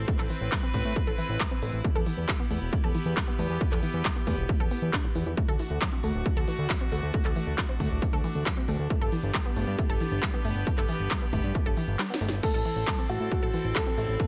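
Uplifting trance at 136 BPM in A dorian, euphoric and soaring, this dry excerpt cycles through Am, Em, D and G as a fat, detuned sawtooth bass, a round, bright filter-pluck arpeggio with chorus and delay, and floating sul tasto chamber strings holding sustained chords all pump with sidechain, while a heavy, up-front electronic kick and a techno kit of cracking snare, smooth hi-hats, handclaps and crash cymbal drive the beat, the kick briefly dropping out at 12.0 seconds for a drum fill before a dark, mellow baby grand piano with delay enters at 12.4 seconds.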